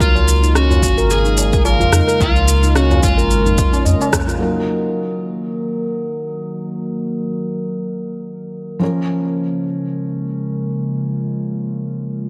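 A felt-muted upright piano sits up front in the second half of this organic downtempo excerpt. It enters at 4.4 seconds with soft, intimate accompaniment, its action noise audible and its dark, vintage tone touched by delay and sidechain pumping. Before it, the opening bars at 109 BPM in Eb minor carry a light 16th-note swing: an overdriven electric slide guitar plays a brief melody with delay, a handpan adds ringing, meditative arpeggios of nitrided steel, and a deep, round sine sub bass pumps underneath. A punchy, layered electronic kick and an electronic shaker and rim click, both overdriven, drive the groove alongside a low-tuned, close and dry tabla in the background, and the band hits an accent at 4.1 seconds before this rhythm section drops out. Throughout, a warbling, nostalgic lo-fi pad of detuned square and triangle waves holds sustained chords with chorus, built-in reverb and pumping; from 4.4 seconds it carries a filter sweep while a bronze singing bowl, struck with a felt mallet, rings with slow beating. 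The chords move from Db6 to Ebm and back over light small-room ambience, leaving a warm, hypnotic mood.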